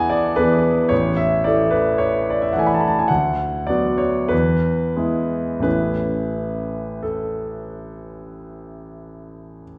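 Serene and nostalgic, this romantic classical nocturne for solo piano drifts in A major at a slow 42-57 BPM in 4/4, with a free rubato feel, and is cut from a longer piece. The clear grand piano spans A1 to B5 across the 9.8-second passage, moving through E, A5, Bm/D and E before settling on A, with an intimate, natural tone and audible action noise. A wet recital hall reverb places the listener further back in the room, with a softened top end.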